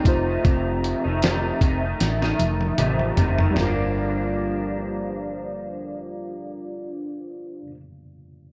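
A slow 77 BPM groove with lightly swung sixteenths opens this short cut of hazy, lonely bedroom-pop indie in G minor, carried by a gritty, sampler-style drum kit with a thumpy kick and fat snare, sitting up front and re-recorded in a large room, which plays a fill from 2.0 seconds and drops out at 3.8 seconds. A round, foam-muted fingered bass holds the low end while a twangy, slightly broken-up guitar through a small old amp, treated with analog chorus and vibrato, takes the foreground, and a reedy, worn, slightly out-of-tune electric piano with a cassette-tape colour lingers in the background. The harmony moves from F7 to Gm7 at 3.6 seconds, all within a dark production with light reverb and digital ambience.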